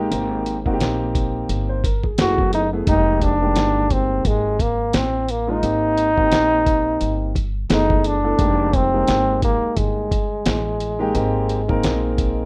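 An 87 BPM groove in 4/4 swings its sixteenths over a dusty, sampler-style drum kit, with a thumpy kick, fat snare and hi-hat that sound gritty, compressed and tape-warm, as if re-recorded in a large room and placed up front. This short cut from a longer jazz-hop piece sits in F dorian with a cool, mellow mood. A pizzicato upright bass with gut strings gives a woody low end, while a dark baby grand piano plays smooth, long-sustaining chords that cycle through Abmaj9, Gbm11 and Fm11. At 2.2 seconds a clear trombone enters as the solo voice, playing a jazz-style melody with light vibrato and a vintage tone, sitting prominently in front of the band. The mix has the rough, dry feel of a home demo with little reverb.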